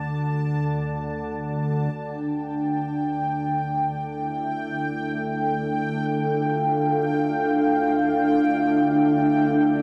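Dark and unsettling, this dark ambient drone in free time opens with a calm, detuned organ-like drone with ring modulation and ensemble chorus beneath an up-front, bubbling, resonant sawtooth texture of random filter steps with chorus and shimmer reverb, and a deep, moody analog pad with a sub octave joins at 1.9 seconds with sustained chords, all bathed in a huge, wet reverb.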